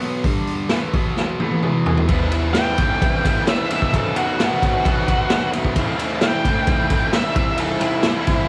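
Swaggering and menacing, this garage rock excerpt drives at 131 BPM in E minor, with a biting, overdriven, double-tracked guitar riff coloured by cassette tape over a raw, boomy drum kit sitting up front in a small room. After a drum fill at 1.2 s, a dark octave-fuzz lead guitar enters at 2.5 s for a solo treated with analog delay, as the chords move from Em through B and Am to C. The home cassette recording carries light reverb, and the drums sound saturated and gritty with a rolled-off top.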